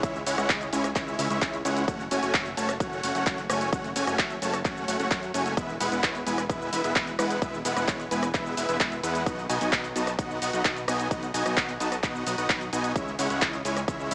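A straight 4/4 groove, built on a punchy, layered electronic kick and an up-front big-room dance kit of handclaps, hi-hat, rim click and shaker, drives this euphoric, powerful festival progressive house excerpt. Huge, bright supersaw chords with sidechain pumping and tape echo carry the riff through C#m, F#m, E and B, while a fat, evolving analog bass with a filter sweep also pumps with sidechain beneath them. The whole sits in light reverb with a small-speaker sound.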